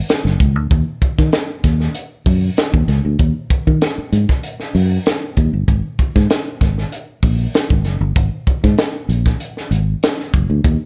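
Sly and cool, this funk excerpt at 97 BPM in a straight 4/4 pairs a crisp fusion drum kit, up front with a punchy kick, a high-tuned snare, hi-hat and a small, pumping room, with a dark, round, foam-muted fingered electric bass that sits direct and amped up front from Gb1 to Eb3 under a light reverb.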